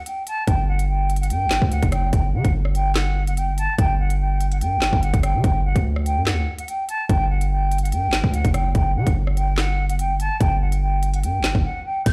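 Played back through a big sound system in a bare stone room, this cold, ominous fragment of half-time drill at 145 BPM, tuned to A4 = 435 Hz, sets an airy, distant concert flute melody with vibrato, tongued notes and delay over an electronic drum kit of hard-clipped kick, woody snare, crisp hi-hats, handclaps, rim clicks and crash, while a heavy, aggressive distorted 808-style bass with a noise layer and fast attack joins at 0.5 seconds before a brief break at 11.6 seconds.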